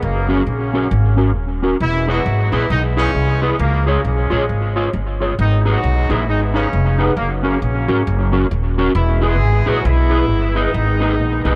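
Ska at 134 BPM in 4/4 with a swung eighth-note feel, mischievous and energetic, cut from a longer piece. A punchy horn section carries the melody with vibrato and octave doubling, its tape echo and roomy, distant quality adding character. A woody pizzicato upright bass sits up front, while a dark, clean, fingered electric guitar enters at 0.3 seconds with ensemble chorus and tape echo over chords moving from F# through E, C# and G#m, all in light reverb.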